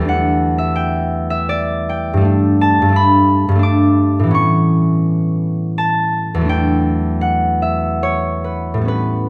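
Close, detailed microphones capture a solo concert harp up front in a moderate recital hall reverb. This is a brief, peaceful and graceful passage cut from a longer classical piece in 3/4 with a rubato feel. The fingerpicked harp rings warmly across a range from E2 to D6, moving through Em11, Gadd9 and Aadd9 before returning to Em11 at 6.5 seconds.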